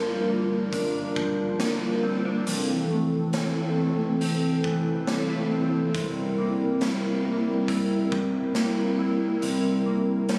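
A straight 4/4 pulse at 69 BPM comes from a raw garage drum kit of kick, snare and hi-hat that joins at 0.7 seconds, its punchy kick and medium-tuned snare sounding gritty and rolled-off in a bright, pumping stone room. This short dream pop excerpt sits in C mixolydian and feels dreamy and blissful, moving through Gm7, Fmaj7 and C7. Up front, a hollow, flute-like soft pad holds sustained chords with a slow attack, long release and detuned chorus shimmer. A dark, clean electric guitar plays fingered arpeggios through analog chorus and tape echo. A deep, thick sub bass with a saturated triangle tone enters at 0.3 seconds and sits in the background. The whole mix is bathed in a lush hall reverb with a 3.1-second decay, and is compressed with a phone-in-the-room character.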